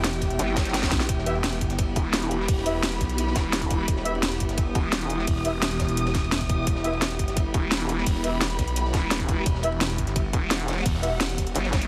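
A heavily compressed, radio-like mix in a small room frames this tense, futuristic 172 BPM excerpt of dark technical drum and bass in E harmonic minor, where a tight electronic kick, an overdriven kit with cracking snare and bright hats up front, and a gritty, rolled-off breakbeat kit in the background drive a swirling phased saw bass and a nasal vowel-sweep wobble bass that drops out between 5.3 and 7.5 seconds, while a moody ambient pad, veiled con sordino strings and distant, punchy brass stabs with delay hover over a single Em chord, with a drum fill at 0.6 seconds.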